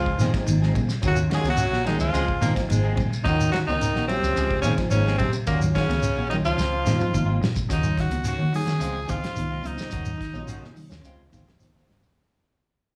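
Set in a moderate club reverb, this defiant, funky afrobeat excerpt at 108 BPM in Eb dorian puts a raspy, gritty tenor saxophone melody up front over a clear trombone second line that stops at 7.4 s, while a whispered baritone saxophone slips in briefly at 1.6 s, a dark, round hollow-body bass and a damped 70s drum kit with a fat snare and drum fills anchor the groove, clean electric guitar arpeggios and semi-hollow guitar stabs sit in the background beside a lightly overdriven tonewheel organ with slow rotary speaker, and bright high-tuned congas and a grainy shekere add percussion as the recording fades out from 7.7 s.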